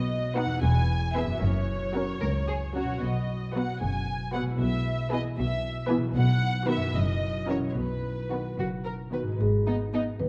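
Muted, veiled violins carry the melody over ringing arpeggios from a bright concert harp and a dark bed of muted cellos and distant double basses, joined at 0.4 seconds by a softer second violin line and lush con sordino violas in this mischievous, magical 6/8 film cue excerpt, before a woody, mellow marimba with soft mallets joins the melody at 9.1 seconds in a moderate scoring-stage reverb.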